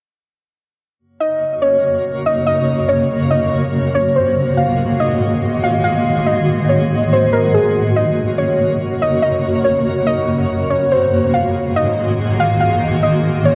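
Bathed in a lush hall reverb and the warbling pitch drift of worn cassette tape, this floating, dreamy half-time hip hop excerpt moves at 142 BPM in Gb lydian, rocking between Gb and Ab7. A soft, round pluck carries the melody up front from 1.2 seconds, dark and gently decaying through chorus and tape echo. A cloudy, blurred granular pad holds mellow sustained chords from 1.6 seconds, and a faint, sparkling granular texture with octave-up shimmer glimmers around them.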